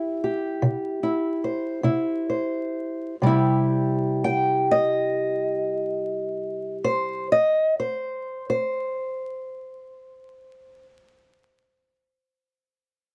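This swaggering, soulful acoustic country blues excerpt sits in C major at a slow 42-53 BPM in a straight 12/8, with the pace slowing down over the opening 3.2 seconds. A lone fingerpicked, ladder-braced acoustic guitar carries everything, placed up front, with a dark, woody, boxy tone from old strings across a range from C3 to G5. The dry, close booth sound has a 1970s studio character and a layer of vinyl crackle.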